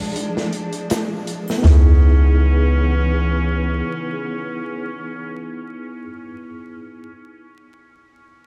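A swung 81 BPM trip hop groove in 4/4 opens with a crunchy, saturated breakbeat kit of hi-hat, snare and toms from 0.2 s, faintly dusted by egg shaker and triangle, over lush bowed symphonic strings holding sustained chords that begin on Fm; at 1.6 s the harmony turns to C#m7 as a deep, round 808-style bass, a clean tine electric piano with harmonic tremolo and tape echo, and a distant, nasal muted trumpet carrying 12-bit sampler grit and dub echo arrive, the piano lingering to 7.1 s in this dark, cinematic fragment wrapped in small-room ambience and vinyl crackle.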